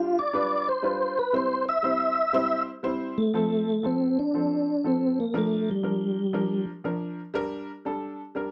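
A wet club reverb surrounds this short, joyful soul clip, cut from a longer piece in F major at 120 BPM with a danceable swung 4/4 feel and tuning at A4 = 438 Hz. Up front, a mellow, round, dark tonewheel organ carries the melody with chorus vibrato, key click and a fast rotary speaker until 6.7 s. A clear, woody, slightly detuned upright piano with short sustain and a worn, open tone accompanies it and continues alone to 8.5 s as the chords move from G7 and C into F, Bb and Gm.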